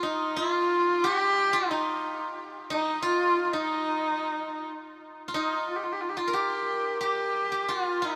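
Proud and galloping, this short passage of Mongolian folk music moves at 90 BPM in a straight 4/4, tuned with A4 at 441 Hz. A single bowed horsehead fiddle carries the melody between Eb4 and G4, its horsehair strings giving a nasal, husky and biting tone with light vibrato and sliding portamento. A steel-string zither, played with fingerpicks, adds a silvery, ringing second line from Eb4 to Bb4. Both instruments sound from 0.0 to 8.2 s, the fiddle standing a little louder than the zither. A huge ambient reverb with a 6.7-second decay surrounds them. The fiddle also has an earthy, distant quality, though both parts sit up front. The clip is a single section cut from a longer piece.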